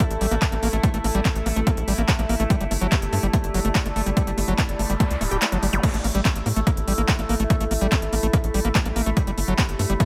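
This excerpt of alien, driving psychedelic trance opens at once with a punchy, overdriven electronic kick up front and a big-room dance kit of crisp hi-hats, handclaps and crash cymbal, both re-recorded in a large room. Underneath, a tight sawtooth-and-square sequencer bass plucks low and mellow, while a squelchy, gritty acid bass riff with a resonant filter sweep rides above it, saturated and smeared with cassette tape and tape echo. In the background, an overtone-sweeping drone holds nasal, slowly shifting chords that alternate between A5 and G5, with chorus, reverb and sidechain pumping. A warbling, lo-fi pad in a dark, nostalgic register adds chorused texture that pumps along with the beat. Around 4.8 seconds a distant noise sweep and zap appears, and the kick drops out from 5.4 to 5.8 seconds before returning, in an otherwise dry, dense mix.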